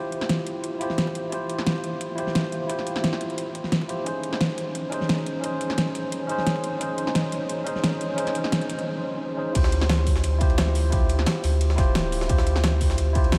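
A clean tine electric piano opens this lush, soulful liquid drum and bass excerpt at 175 BPM, its up-front chords colored by analog delay and sounding as if played through built-in speakers, moving from Cadd11/E to G#add11/C#. A pop drum kit joins almost at once with a fat snare, metallic hats and crash cymbal, and a punchy, layered electronic kick enters at 1.1 seconds, both set in studio reverb. After a short break, the drop arrives at 9.6 seconds on a Dm11 chord, bringing in a deep, round sine sub bass with a fast attack and long sustain, thickened by tube saturation. Alongside it, a quieter jungle sampler-style kit adds ride cymbal and a high-tuned snare, sounding gritty, compressed, pitched up and tape-warm, as if re-recorded in a large room. The whole mix is soaked in a huge ambient reverb with a dreamy, floating tail.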